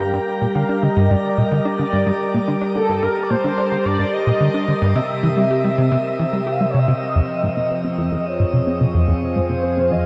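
Bathed in a wet shimmer reverb with a 7.2-second tail, this short cut of ambient, sequencer-driven space music moves at 109 BPM in 4/4 in G minor, with an expansive, mysterious mood. Up front, a punchy, funky analog bass riff with a filter pluck drives the piece, while a bright, detuned sawtooth pad holds sustained chords with a slow filter swell. A mellow, horn-like lead with phaser, chorus, delay and vibrato carries the melody over a very quiet, breathy wind-like noise texture. At 7.2 seconds the harmony shifts from Gm and C7 to Fm, as the noise texture stops and a deep, round sine sub bass enters in the background.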